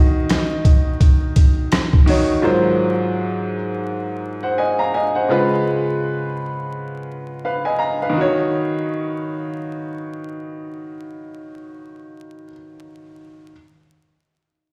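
Moody and reflective, this boom-bap hip-hop excerpt moves at 84 BPM in Eb minor with a swung 16th-note feel. A clear upright piano carries the accompaniment throughout, its woody, boxy tone up front and intimate, with audible action noise and long sustain, filtered and colored by cassette tape as it moves through Ebm7, Ab13 and Db7 before returning to Ebm7 at 8.2 seconds. A sampler-style drum kit of kick, snare, rim click and hi-hat appears only briefly, from 0.3 to 2.3 seconds, sounding compressed, pitched down and gritty, with a thumpy kick and a medium-tuned snare. The drums sit louder than the piano. Light reverb and small-room ambience surround the music, along with a stone-room character and vinyl crackle, as if it were played on a big sound system in a bare room.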